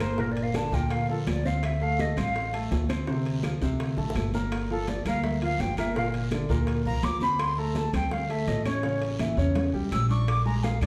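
A straight 4/4 groove at 166 BPM carries this sultry, fiery Afro-Cuban jazz piece in D minor, where a breathy, expressive flute with vibrato and a crisp chiff solos throughout over an up-front grand piano and thumpy pizzicato upright bass on gut strings, while high-tuned congas, tight bongos entering at 0.2 seconds and ringing metal-shell timbales sit in the background alongside raspy guiro and very quiet woody claves, with drum fills at 4.0 and 9.2 seconds and a large, reverberant studio that sets the sound further back in the room.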